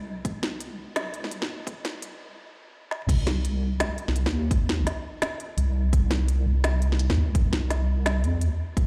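Heard as if played through a big sound system in a bare room and high-pass filtered, this cinematic, heavy half-time drum and bass cut from a longer piece moves at 169 BPM in C minor, with a swung 16th-note feel. A deep, dark wobble bass, saturated, compressed and thickened with chorus, opens alone before a hard-clipped, overdriven electronic kick and a tape-warm electronic kit with a woody snare, crisp hats, crash and toms join at 0.2 seconds, all sitting up front. A filter-swept build-up ends in a drum fill at 2.9 seconds, and the drop lands at 3.1 seconds.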